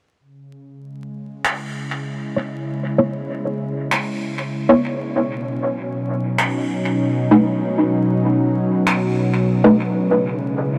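Muted, deep sawtooth dub chord stabs with a filter sweep and a plucky, fast-attack bite sit up front from 2.4 seconds in this hazy, deep ambient dub fragment at 97 BPM in C# minor, cut from a longer piece, over a smooth, detuned, chorused analog pad that fades in holding sustained C#m and B chords and airy, polished finger snaps from 1.4 seconds trailing dub echo, all bathed in a huge ambient reverb with vinyl crackle.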